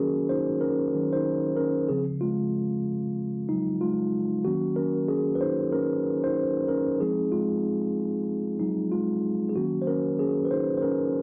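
A mellow tine electric piano carries this soulful, smooth R&B excerpt entirely on its own, playing solo from 0.0 to 11.2 seconds. Its clean, up-front tone sits in a range from Db3 to C5, and a slapback echo gives the notes a doubled edge. The feel is a 4/4 groove at 94 BPM with a swung sixteenth-note lilt, and the harmony moves from Ebm7 to Db, back to Ebm7, then to Fm7 before settling again on Ebm7. The sound is dry and direct, like a close 1970s-style studio recording, touched by light reverb. Cut from a longer piece, it plays as a single passage of smooth, soulful R&B.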